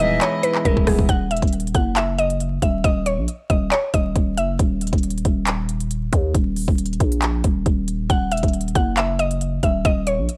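Dark and melancholic, this half-time trap hip hop excerpt at 137 BPM in Eb phrygian opens with clean, picked electric guitar and distant, floating bowed chamber strings that fall away by 1.1 seconds, leaving an up-front electronic kit of hard-clipped kick, crisp hats, handclaps and rim clicks over a growling, buzzy 808-style bass, while a woody, round mallet-like synth pluck with chorus carries the melody until 4.6 seconds and returns at 8.1 seconds, set in a dry, gritty recording with digital ambience, transformer saturation and vinyl crackle.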